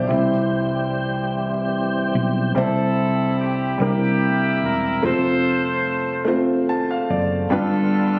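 Gospel in a slow 6/8 at 48 BPM in C major, jubilant and reverent, where a smooth, vintage grand piano carries the accompaniment with a fill at 6.3 seconds over a dark, round hollow-body electric bass, while a barely audible, mellow French horn section and a lightly overdriven tonewheel organ with slow rotary speaker and chorus vibrato hold sustained chords at the start before a clear, punchy horn section takes the melody from 2.6 seconds, the organ returning at 7.5 seconds as the harmony moves through C, C7, F and G7, all captured on a phone in a small room with light reverb in this short excerpt.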